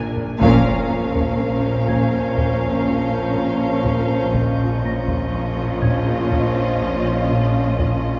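A cavernous church reverb bathes this brief, mysterious and ominous suspense cue from a cinematic score, where a tense, sawtooth-edged drone with its own reverb and a ringing, bell-like celesta sound from the start before a very quiet, saturated taiko ensemble enters with a fill at 0.2 seconds. At 0.4 seconds the full orchestra lands on a band accent alongside a huge, dark impact that lingers until 4.3 seconds, as a dark violin section carries an expressive, vibrato-laden melody over a softer second violin line, distant violas, a shadowy French horn section holding sustained chords, and a smooth cello riff. Warm cellos and double basses anchor the bass while a focused upper violin texture sits in the background.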